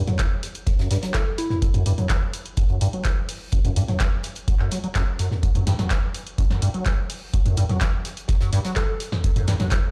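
A squelchy, resonant acid bass riff sits up front with chorus and sidechain pumping, its filter sweeping throughout this gritty, hypnotic acid house clip at 126 BPM in F# phrygian. A deep, tape-warm electronic kick and a punchy analog drum machine with handclaps, hi-hat, snare and toms drive the groove, while a very quiet, muffled soul drum kit adds dry, lo-fi hi-hat and snare underneath. A round, warbling FM synth lead with vibrato, chorus and tape echo appears briefly at 1.1 and 8.8 seconds, and the whole mix sounds as if played over a big sound system in a bare stone room.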